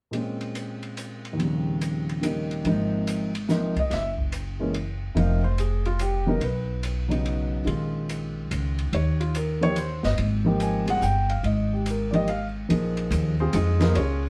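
A dark, mellow baby grand piano carries the melody in a relaxed, swung jazz waltz, with audible action noise and long sustain, while an open drum kit sits lower in the mix, with boomy kick, dusky cymbals, a medium-tuned snare and a rolled-off top. At 2.6 seconds a woody, pizzicato upright bass with steel strings joins up front alongside the piano. Moderate studio reverb gives the trio an intimate, easygoing glow as the harmony drifts through chords like Bbm9, Eb13 and Abmaj7sus2 before the cut-off at 14.3 seconds.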